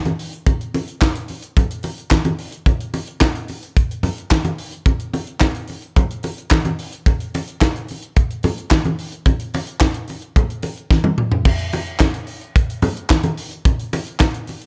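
A light reverb and a small-room, natural sound give this short cut from a longer disco piece an acoustic, up-front presence. The mood is glamorous and driving, set in a straight 4/4 feel. A tight funk drum kit carries the groove from start to finish, with a high-tuned snare and a tight kick alongside hi-hat, handclaps, toms and crash cymbal. Congas play throughout as well, low-tuned yet bright, with a thin skin struck by hard hands and sitting slightly beneath the kit in level. The arrangement moves through three short sections, and a drum fill from 10.9 to 11.5 seconds leads into the final stretch.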